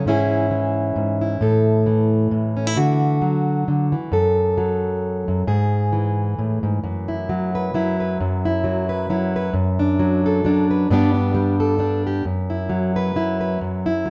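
A lightly swung 3/4 lilt at 133 BPM carries this pastoral, gentle folk piece cut from a longer work, where a solo fingerpicked, plugged-in jumbo steel-string acoustic guitar with fresh strings and a full-bodied, up-front tone moves through chords like C#m/G#, Dadd9 and F#m before shifting at 6.8 seconds into a second section touching F#7sus4, Bm7/F# and G, all played live in a stone room with moderate reverb.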